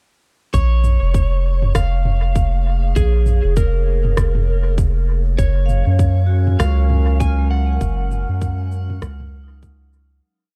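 A slightly broken-up electric slide guitar, played with fingerpicks, drifts through a free melody soaked in dub echo, while a deep, round sub bass sits up front beneath it in this hazy, short ambient dub piece at 99 BPM in Bb minor, with a swung sixteenth feel. A tight, soft electronic kick and a sparse, echoing kit of cabasa, rim click and low toms keep the slow groove, as a warbling, nostalgic lo-fi pad with chorus and reverb holds mellow chords in the background, moving from Bbm7 to Gbmaj7 at 5.4 s. A bright, metallic vibraphone enters at 5.7 s with ringing, echoing arpeggios in loops of unequal length drifting against each other, before the dark, tape-tinged piece fades out from 7.0 s.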